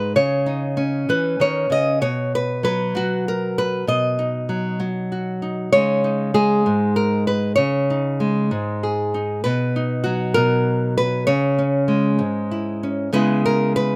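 Closely miked and detailed with a touch of light reverb, this wistful, reflective fragment of solo folk fingerstyle features a small, up-front nylon-string guitar fingerpicked in a slow 6/8 at 65 BPM in C# dorian, moving from C#sus2 to B and back before settling through C#m to E/C# near 13.1 seconds.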